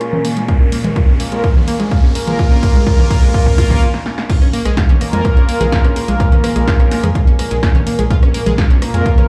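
Cinematic and dramatic, this melodic techno excerpt in Bb minor moves at 126 BPM over a held Bbm7, with a tense string-like drone beneath a deep, moody ambient pad, round detuned pluck arpeggios with tape echo and a menacing, saturated saw bass, these last three all pumping under the sidechain. A punchy, up-front electronic kick and a large-room analog drum machine with congas, rim clicks, hi-hats and crash drive a build-up where a riser climbs alongside filter sweeps on the pluck and pad, while bold, brassy pad stabs with tremolo enter at 1.2 s. After a brief stop, the drop lands at 4.3 s, all of it carried in a big, reverberant room sound.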